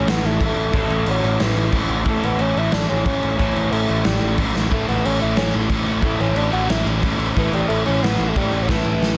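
A mellow bassoon with classical vibrato carries the melody over an energetic, rebellious half-time punk rock groove, where a gritty, up-front garage drum kit with a punchy kick and fills at 4.5 and 8.7 seconds plays alongside a growling bass with overdrive and a crunchy guitar alongside a second overdriven guitar, both picking riffs in the background, until a thick, double-tracked fuzz guitar joins at 4.7 seconds, in a dense, dry, heavily limited mix cut from a longer piece.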